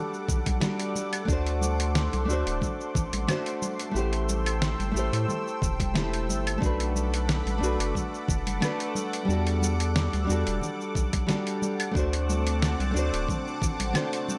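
Relaxed sunset chillout, cut from a longer piece, where a dark, fingerpicked nylon-string guitar with sampler grit, delay and shimmer reverb sits up front over a lush, detuned pad wrapped in chorus and phaser, while a round, deep analog bass, a thumpy overdriven electronic kick, a gritty sampler-style kit of fat snare, hi-hat, shaker and claves, and soft-handed congas in the background give a gently swung, dusty groove.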